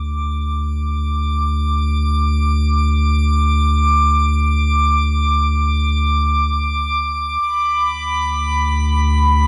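Ambient in free time, weightless and serene, this excerpt pairs a round, deep sub bass holding D2 with a drifting glass-harmonics texture between B5 and D6, both fading in from 0.0 to 9.5 seconds. The sub bass has a fast attack and sustains up front, while the texture enters with a slow attack, its glassy, drifting overtones carrying chorus and its own reverb, settling onto a Bm/D chord at 7.4 seconds. A moderate concert hall reverb surrounds the pair.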